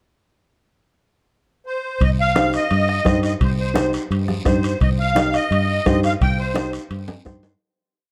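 Fiery and danceable, this short cumbia in C minor runs at a brisk 171 BPM, opening with a pickup bar where a reedy, shimmering musette accordion states its hook phrases up front from 1.7 seconds. At 2.0 seconds the groove settles on a Cm chord: a round, foam-muted fingered electric bass plays a cumbia figure over a soft-beatered bombo, low-tuned congas sit very quiet on the off-beats, metal-shelled timbales ring in the background, and a raspy guiro scrapes long and short strokes, while from 2.4 seconds a woody, mellow upright piano adds short triad chords with audible action noise. The dark production carries light reverb, and the piece fades out from 6.2 seconds, closing on a brief drum fill.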